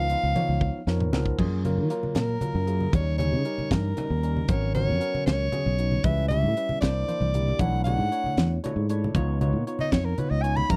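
Electric jazz fusion in a straight 6/8 at 77 BPM, soaring and slick, where a warm, close-miked soprano saxophone takes an up-front solo from 1.4 s over harmony moving from C#13 through F#maj9, G#m11 and C9 to C#9. A barky, lightly overdriven tine electric piano with lush chorus plays a fill with the drums at 0.6 s, while a round, dark fretless bass sits up front beside a tight funk kit with a high-tuned snare, and damped, thick-skinned congas sit in the background. The sound is a dry, close 1970s-style studio recording with little reverb, and this short excerpt is cut from a longer piece.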